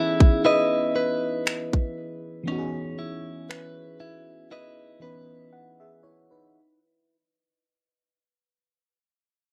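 A home cassette recording in a small room with short reverb frames this sensual, moody contemporary R&B piece at a slow 59 BPM in C# minor, where an up-front, compressed clean electric guitar plays picked arpeggios over a soft, round, dark FM electric piano with chorus voicing a C#m9 chord in fast-attack, decaying tones, while an electronic trap kit of finger snaps and a hard-clipped kick plays from 0.2 to 3.8 seconds before a break at 5.5 seconds as the fragment fades out.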